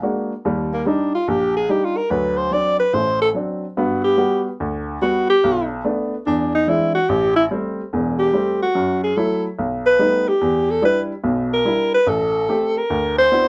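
A woody, polished upright piano opens this relaxed, sophisticated swing jazz fragment, joined at 0.7 seconds by a mellow, up-front alto saxophone soloing with vibrato and a smooth top over jazzy seventh-chord harmony, both set in a moderate club reverb until the cut at 13.5 seconds.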